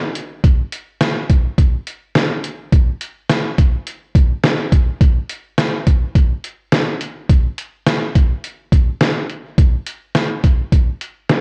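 Worn, warbly cassette tape colours this brief excerpt, its pitch drifting under a light reverb. A bright, upbeat pop groove in a straight 4/4 feel comes from a trip hop sampler-style drum kit that enters at 0.2 s. Its hi-hat, thumpy kick and medium-tuned snare sit up front, sounding compressed, pitched down and gritty, as if re-recorded in a small room.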